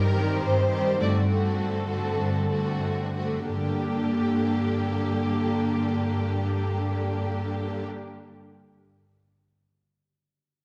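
Clear, up-front violas carry the accompaniment in this stormy, restless excerpt from a fast, dramatic romantic orchestral movement in G minor at 89-107 BPM, as a lush, expressive violin section sings the melody over a bright, focused second violin line, a rich, smooth cello bass on G2 and ringing, fingerpicked harp arpeggios in the background, set in a wet scoring-stage reverb heard from further back in the room, with the tempo slowing through the first 3.5 seconds before the harmony settles on G minor.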